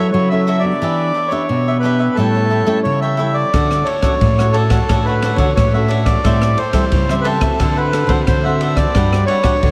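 Soaked in a huge, dreamy reverb, this joyful, festive samba-choro excerpt moves at 89 BPM in D major. A reedy, smooth accordion carries the melody up front with an analog delay, over a mellow, crisp picked cavaquinho, a fingerpicked classical nylon-string guitar with audible finger squeak, and a woody, full-bodied thumb-plucked nylon-string bass on old strings. At 3.5 seconds an open jazz kit enters with a boomy kick, dark ride cymbal and rim click, its rolled-off top keeping the groove warm as the chords drift from F#m7 toward Gmaj7.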